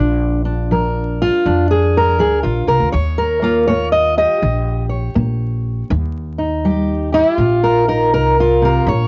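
A fingerpicked steel-string acoustic guitar carries the melody up front, its dark, auditorium-sized tone colored by cassette tape as it ranges from Bb2 up to Eb5. This is rollicking, soulful acoustic country blues in a swung 4/4, played as a short cut from a longer piece. An upright bass sits up front beneath it, plucked pizzicato on steel strings with a woody, thumpy sound that still carries a bright edge, holding low between Bb1 and F2. Both parts play throughout the roughly 9-second passage, moving from Bb7 to Eb7 at 2.9 seconds. Light reverb and vinyl crackle give the home cassette recording an intimate, lived-in feel.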